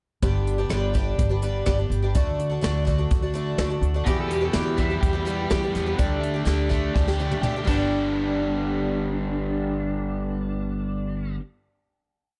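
A bright, shimmering twelve-string acoustic guitar sits up front, its octave-doubled open chord shapes played in a sixteenths strumming pattern with a boxy archtop body, audible finger squeak and a touch of plate reverb. This short, complete folk rock and heartland rock piece in G major moves at 125 BPM in a straight 4/4, carrying a nostalgic, hopeful mood over a G, D, Em, Dsus4 progression that resolves back to G. A woody pizzicato upright bass plays a dotted figure underneath, while a soft brush kit with dark cymbals and a punchy kick keeps a rock groove that ends in a fill just before the final hit at 7.9 seconds. At 4.1 seconds a double-tracked, scooped overdriven electric guitar comes in up front with picked arpeggios, joined by a slightly broken-up slide guitar played with fingerpicks adding blues licks. The production is dark and warm with light reverb, giving the whole piece a rounded top end.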